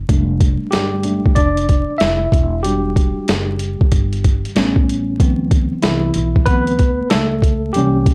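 A woody pizzicato upright bass with transformer saturation opens this smoky, cool jazz-hop fragment, joined at 0.1 seconds by an up-front sampler-style boom bap kit with a thumpy kick, medium-tuned snare and hi-hat, compressed and re-recorded in a large room, all riding a swung sixteenth-note feel. A worn, slightly out-of-tune tine electric piano, lightly overdriven and heard through its built-in speakers, takes the solo spotlight over chords moving from F69 through Em9 and A9 to D13. The dry, gritty hardware sound carries light reverb and vinyl crackle, and the clip is cut from a longer piece.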